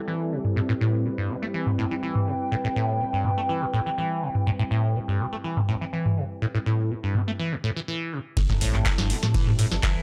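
A straight 4/4 acid house groove at 123 BPM in A minor sits on a single Am7 chord, gritty and hypnotic, with a booming analog drum machine of handclaps, hats, ride, tonal snare and toms, all low-pass filtered, under a squelchy, resonant acid bass riff that sweeps its filter through phaser, tube saturation, chorus and analog delay, up front. A smooth, detuned sawtooth pad holds sustained chords with lush chorus and sidechain pumping, while a nostalgic, lo-fi, ring-modulated pad adds texture until 7.4 seconds, when a break begins. At 8.4 seconds the drop brings in a deep electronic kick, a round sine sub bass pumping in the background and a very quiet, pitched-up breakbeat kit, all captured in a dry, gritty hardware recording with light reverb and transformer saturation, cut from a longer piece.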